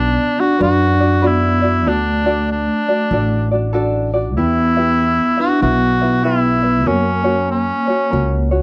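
A dreamy, languid Hawaiian excerpt in B minor opens with all four parts together at a relaxed 96 BPM swing, the cor anglais singing the melody up front with a light classical vibrato while soft-mallet vibraphone rings a mellow second line beneath it, touched with slapback echo and a medium motor vibrato. Thumb-plucked tenor ukulele supplies light acoustic accompaniment, and a woody, bright pizzicato upright bass on steel strings sits forward in the mix as the chords move from Bm through D and Em to F#. The sound is dry and close, like a 1970s studio session, and the fragment ends at 8.6 seconds.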